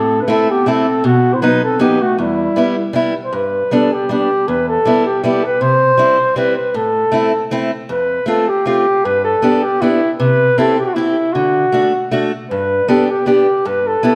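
Alpine folk for a dance band in a jolly, bouncy 3/4 at 157 BPM, moving from E minor into G major at 3.3 s in this fragment cut from a longer piece. A mellow flugelhorn with light vibrato and a slapback echo carries the melody up front in a classical style, while a soft-attack clarinet sounds a distant second line only until 2.9 s. A boxy, fingerpicked acoustic archtop guitar accompanies throughout, set up front in a dark, warm production with moderate recital hall reverb.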